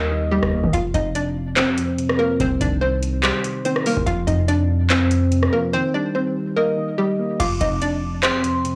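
A hollow, bouncy square-wave pluck carries the melody up front in this melancholic, eerie trap excerpt, its detuned tone given shimmer by chorus and tape echo. Beneath it, soft, round electric-piano-like synth keys with chorus supply gentle accompaniment, while a long, deep 808-style bass sustains and decays with a mellow sine body. A booming analog drum machine enters at 0.4 seconds in a half-time feel, bringing a deep kick, metallic hi-hats, handclaps, rim clicks and crash cymbal, its tape-warm sound re-recorded in a large room and placed up front. Breaks fall at the opening and again from 5.7 seconds, and at 7.4 seconds a crystalline, warbling FM bell joins high above with chorus, tremolo and tape echo. The recording is blown-out and overdriven, with small-room ambience and light reverb.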